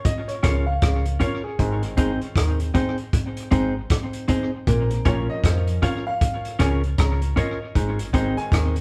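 A clear, intimate baby grand piano carries this hypnotic, laid-back roots reggae excerpt, playing stabs as a solo throughout with its action noise audible, over a swung groove that moves between B-flat minor and A-flat. Muffled, lo-fi vintage drums enter at 0.1 s with hi-hat, rim click and a punchy kick, and at 0.4 s a deep, round, foam-muted dub bass joins them, along with a stringy, mellow clav riff through a combo amp and a dark, compressed clean electric guitar accompaniment touched with tape echo. The band sounds as if it is playing live together in one room, wrapped in moderate studio reverb.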